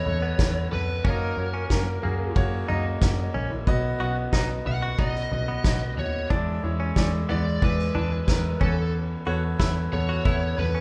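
Piano-driven pop with a warm, hopeful mood, heard here as a short cut from a longer piece in a steady, straight 4/4. A clear grand piano carries the accompaniment, its intimate sound catching audible action noise, while a lead guitar through a small cranked amp sings the melody with an overdriven, picked tone. Beneath them, a vintage foam-muted electric bass gives a dark, round low end, and a direct-recorded clean electric guitar plays a bright, twangy, compressed riff with a scooped edge. The drum kit is struck with soft mallets on drums and cymbals, blending a punchy kick, medium-tuned snare, toms and ride into a distant, roomy backdrop. The band plays live together in one large studio with moderate reverb, moving through chords from Aadd9/E to F#, B and E7 before landing back on Aadd9/E at 8.6 seconds.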